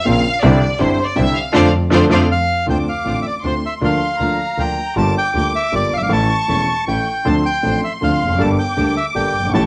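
A bright, lush violin section opens this melancholic, tense tango in D minor, bowing with vibrato. A close, intimate grand piano, bowed double bass and distant, very quiet string stabs follow almost at once, with a band accent at 1.5 seconds. At 2.3 seconds a reedy bandoneon steps up front with the melody, and at 2.7 seconds the music moves into a new section over Dm7, Bb/D, Gm7 and A, closing on Gmadd9. The piano's deep bass and audible action noise carry the accompaniment, while the single bowed bass adds a warm, focused vibrato line beneath, and the rich string section hovers far behind. Set at 158 BPM in 3/4 with a rubato feel, this cut from a longer piece has a homemade cassette character, with tape coloring and plate reverb on the violins and piano inside a moderate studio ambience.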